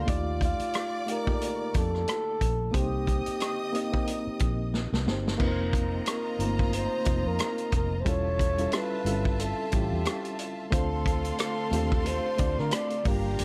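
A small room sound frames this smooth, bittersweet passage of lush 1970s-style soul with a swung sixteenth-note feel, led by a breathy, whispered flugelhorn whose scooped notes and light vibrato carry the melody over a focused, bowed violin section playing a second line. A reedy, slightly out-of-tune electric piano with fast tremolo, a round, foam-muted fingered bass and an up-front vintage drum kit with dark cymbals and a punchy kick support them, with a drum fill at 4.7 seconds. At 10.7 seconds a distant, even string section enters in the background with sustained chords.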